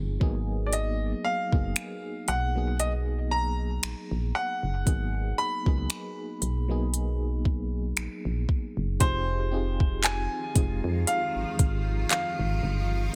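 Contemporary R&B at a slow 58 BPM with a lightly swung 16th feel, this longing, sensual excerpt moves from Abm9 to Fm9 at 9.0 seconds over a dark FM electric piano with tremolo and a punchy, round FM bass that sits up front. An electronic drum kit of soft kick, smooth hi-hat, finger snaps and handclaps enters at 0.2 seconds, with soft clipping on the snare, while a clear, polished baby grand piano carries the melody through tape echo. At 9.6 seconds a cloudy, evolving granular pad arrives with built-in reverb, phaser and sidechain pumping, all within a dry, dense and heavily limited modern mix.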